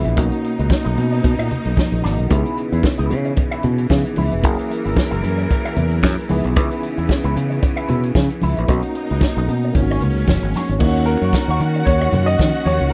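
A dry, close recording with a 1970s studio character and little reverb frames this short, glamorous disco cut taken from a longer piece, moving at 113 BPM in 4/4 with a light sixteenth-note swing in C# dorian. Up front, a punchy vintage drum kit with dark cymbals and a rolled-off top sits beside a growly, bright fingered electric bass, while soft-handed congas with a thin skin tick along in the background. A twangy, compressed electric guitar run through an envelope filter with wah adds clean picked accompaniment, a tine electric piano plays from its built-in speakers behind the mix, and a clear studio string section holds sustained chords over a progression moving from Bmaj7 through C#m7 and F#7 to G#7sus4. At 10.8 seconds the music shifts to D#m7 as a lush symphonic violin section enters with a smooth, vibrato-rich second line. A worn baby grand piano with long sustain takes the melody from 11.1 seconds, bringing a present, danceable lift to the close of the passage.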